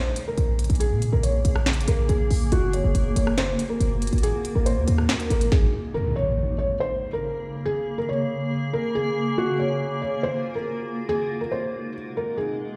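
Brooding, hard-hitting half-time trap hip hop at 140 BPM in Bb minor, where a soft, felt-muted upright piano melody with audible action noise and digital delay floats over a cloudy, blurred granular pad, while a punchy, tight 808-style bass and a crisp, hard-clipped trap kit drop out after about 5.6 s, leaving an electronic swell and impact landing at 5.9 s and the piano and pad to ring on through a stone room reverb, as if played on a big sound system in a bare room.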